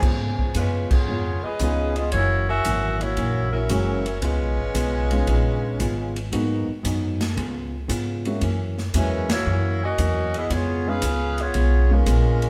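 A moderate stone-room reverb surrounds this brassy, swinging big band excerpt in Db mixolydian, cut from a longer piece and played live in one room at 115 BPM with a swing on the eighths over a Db7 to Gb7 progression with band accents. A soft-attack trombone section sounds only briefly before dropping out at 0.5 s, and a mellow, lightly vibrato-laden saxophone section takes the melody from 0.6 s, sitting up front yet distant. A woody pizzicato upright bass, an airy drum kit with a punchy kick and polished ride and hi-hat, a dark, clean hollow-body electric guitar, and an intimate grand piano entering at 1.6 s with audible action noise fill out the accompaniment.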